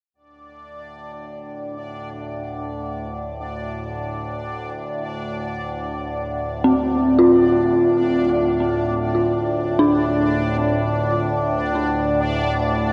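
A desolate, cavernous dark ambient drone in free time, cut from a longer piece, where a bubbling, bright texture of random filter steps fades in from 0.4 seconds, an up-front, resonant low drone with moving overtones fades in beneath it at 0.9 seconds, and an eerie, inharmonic bell arpeggio with delay and shimmer reverb enters at 6.6 seconds over a Dm7 chord, all bathed in a cathedral reverb and the warbly pitch drift of worn cassette tape.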